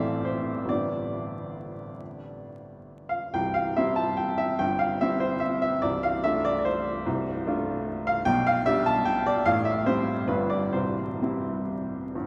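A bright, woody upright piano plays alone and up front in this graceful, sparkling classical waltz in C major, moving in a rubato 3/4 between 124 and 158 BPM and spanning C1 to A5. Its vintage character sits in a long, wet cathedral reverb of about 6.2 seconds, joined by vinyl crackle and a faint mains hum, and the tuning rests at A4 = 438 Hz. Cut from a longer piece, the 12.3-second passage moves from Am and G through C, Dm7/C and G/B to Am7 and G7, settling on C at 10.7 seconds.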